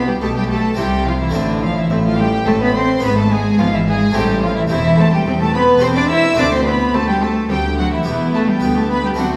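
A resonant hall gives this short baroque-style concerto excerpt a wet, spacious bloom, with the reverb hanging for about 1.6 seconds around a brilliant, lively string band in 3/4 at 107 BPM. A solo cello carries the melody at the front, its close, reedy gut-string tone the most prominent voice, while a chamber violin section also carries the melody high above with a smooth top and light vibrato. Beneath them a second violin section adds a warm inner line, and a very quiet viola section joins at 0.2 seconds with soft accompanying figures. The low end rests on a bowed cello section sitting in the background and a double bass section with a rich, period-style tone. An airy, full-voiced harpsichord with three sets of strings plucks accompaniment from behind the strings as the harmony moves through minor colours and a D7, with the music settling into G major from about 4.7 seconds.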